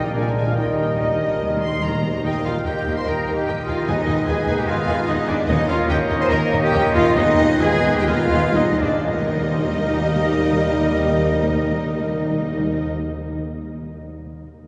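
Drenched in a cathedral-sized reverb and heard from far back in the hall, this fast, stormy romantic orchestral excerpt in Eb major (115-150 BPM, 4/4) sets a dark, woody violin section on the melody above lush second lines from a smoother violin section, a vintage-toned oboe, a soft clarinet and a faint, hollow flute, while a clear viola section and a mellow bassoon fill the accompaniment, distant French horns and present trombones hold sustained chords, a tight trumpet section adds stabs, a bright, ringing harp spins arpeggios, and a warm, even cello section and a close double bass section anchor the bass beneath articulate hard-mallet timpani fills at 0.6 and 7.2 seconds as the music slows from 4.7 to 9.1 seconds.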